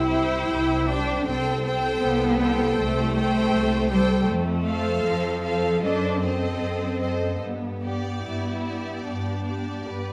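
Serene and lyrical, this slow romantic passage for string orchestra moves at 72-81 BPM in 4/4 with a rubato feel, tuned to A4 = 436 Hz, as the harmony passes from C through Am7/C and F to F#dim7 before arriving on G. Close, lush violins carry the vibrato-rich melody, a second violin line with a smooth top sits beneath it, and the violas add focused accompaniment from further back. Woody, dark cellos and expressive bowed double basses stand up front in the low end, and a moderate recital hall reverb of 1.3 seconds gives the whole string body a sense of space.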